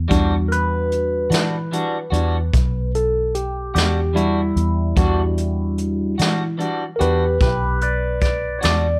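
Slow blues in 12/8 with a mournful, brooding mood, this excerpt rests on a single Em9 chord while a barky, bright tine electric piano takes the solo, colored by phaser and pushed through a combo amp. Beneath it, a foam-muted vintage fingered electric bass sits dark and round up front, a clean picked electric guitar adds warm accompaniment through harmonic tremolo, and a jazz brush drum kit plays hi-hat, boomy kick and medium-tuned snare with a distant, small-room character. Light reverb wraps the whole piece, which is cut from a longer performance.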